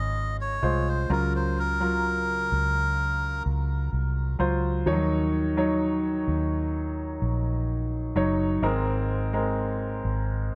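A dark, lightly reverberant production frames this hopeful, emotional pop ballad excerpt at 64 BPM in 4/4, where a reedy, breathy melodica with plate reverb and tape echo carries the melody until 3.4 seconds over a clear, open concert grand piano and a round, punchy, foam-muted fingered electric bass, moving through Db, Gbmaj7/Db, Ebm7 and Abadd9.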